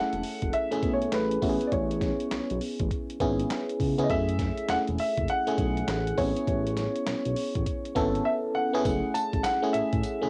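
Recorded at home on cassette in a snug booth, this confident, punchy new jack swing cut from a longer R&B piece sets a dark, worn grand piano melody over glassy, bell-like FM electric piano chords with chorus, a smooth sawtooth-and-square synth bass with vibrato, and a gritty, overdriven sampler-style drum kit of thumpy kick, snare, hi-hat, handclaps and tambourine, swinging over F#m7 and Amaj9.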